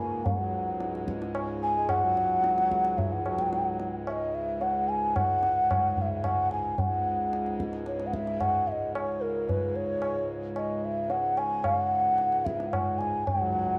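Hindustani classical music in raga Bhimpalasi on C#, meditative and longing at 111 BPM in 3/4, this excerpt sets a mellow, hollow bansuri with vibrato, tape echo and a crisp attack up front over a reedy, breathing pedal harmonium drone and high-tuned, ringing tabla entering at 0.3 seconds, while a clear French horn with light vibrato adds a second line from the start until 4.0 seconds and returns at 13.4 seconds, all within a moderate echo-chamber reverb.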